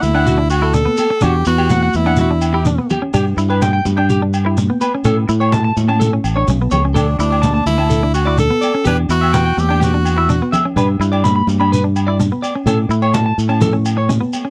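A round, dark fingered electric bass sits up front from the start, alongside high-tuned congas struck with hard hands, a grainy shekere and distant ringing agogo bells, while a bright, vibrato-laden tenor saxophone states short solo phrases from 0.0 to 2.9 seconds and again from 7.0 to 10.5 seconds in this carefree, danceable highlife guitar band cut at 126 BPM in D major. Two picked, twangy electric guitars weave through it: a clean, compressed one comping in the middle register and a scooped, slightly broken-up one playing arpeggios higher up through tape echo. The chords cycle twice through D, Emadd9, G and A, with D5 opening the second pass, in a dry, close 1970s-style studio sound with light reverb.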